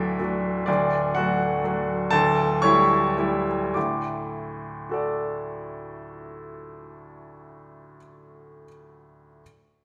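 Set up front in a wet stone room, a clear, intimate baby grand rings with long sustain and audible action noise. This heroic, brilliant classical piano study in D major moves in 3/4 at 101-126 BPM with a rubato feel, slowing through its opening 3.8 seconds as the harmony passes from D to A7/D and back to D. The solo piano spans D1 to D6 across the whole 9.4-second passage, cut from a longer piece, with a new section arriving at 3.8 seconds.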